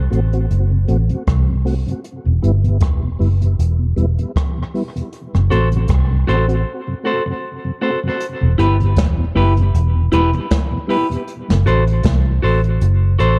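An echo-heavy mix in a small room with light reverb carries this hypnotic, meditative dub reggae excerpt at 78 BPM in E minor, its 16ths gently swung over a slow shift between F#dim and Em. Up front, a dark, round, foam-muted electric bass sits alongside brushed drums with a boomy kick and rolled-off top, while a soft, flute-like tonewheel organ drifts through chorus vibrato, slow rotary speaker and tape echo until 11.6 s. From 5.5 s a clean, picked semi-hollow guitar joins, its hollow-body tone trailing tape echo.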